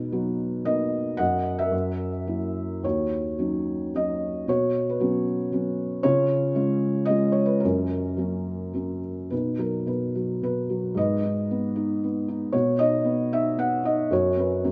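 In a lilting three-beat metre with a freely breathing rubato, this lyrical classical piece unfolds on a felt-muted upright piano playing solo throughout. The mood is warm and sunny, and the piano sits up front with a thick-felt, intimate tone that stays dark and mellow, its sound confined below 7.5 kHz and tuned slightly low to A4 = 437 Hz. The harmony moves from an opening Bmaj7 through colors such as F#7, D#m7 and Bsus2 before settling on F#. At 9.3 seconds a new section begins, turning between B and G#m and pausing on a suspended F#sus4 as the passage, cut from a longer work, breaks off at 14.7 seconds. A moderate scoring-stage reverb gives the piano a gentle halo of space around its close, soft voice.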